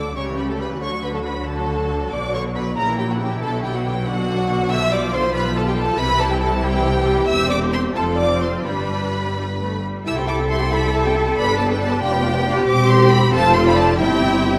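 In 6/8 at 92 dotted-quarter beats per minute with a rubato feel, this spirited, cheerful classical-period movement for string orchestra is tuned to A4 = 436 Hz and settles into C major from 4.7 s. A rich, expressive violin section with a soft attack carries the high melody, a focused second violin section joins with a supporting line at 0.2 s, and a clear, somewhat distant viola section fills in the accompaniment. Beneath them, a cello section with a smooth top and an even, up-front double bass section share the bass, all bowed with vibrato in a lush, wet scoring-stage reverb with a 1.8 s tail, in a passage cut from a longer piece.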